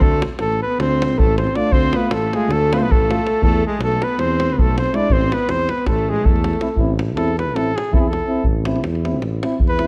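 A close-miked flugelhorn carries the melody up front over a mellow tuba bass, a deep, dry davul and a clear alto saxophone second line with light vibrato in this bittersweet, virtuosic Balkan brass band excerpt in 9/8 at 321 BPM (eighths) in A harmonic minor, with two euphoniums entering in the background at 1.6 seconds, one soft-attacked and vintage, the other smooth-topped, before the saxophone drops out at 6.8 seconds and the flugelhorn takes a solo through the closing section, all set in a dark production with light reverb.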